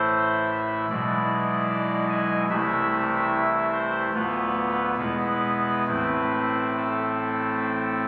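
A solo pipe organ on a soft reed oboe stop, baroque in voicing and placed up front, carries this solemn, grave classical chorale in a slow, rubato 4/4, moving through a minor-key cadence that comes to rest at 5.9 seconds, heard in this 8.1-second fragment cut from a longer piece through the wet reverb of a scoring stage, captured on a phone in the room with added studio reverb and compression.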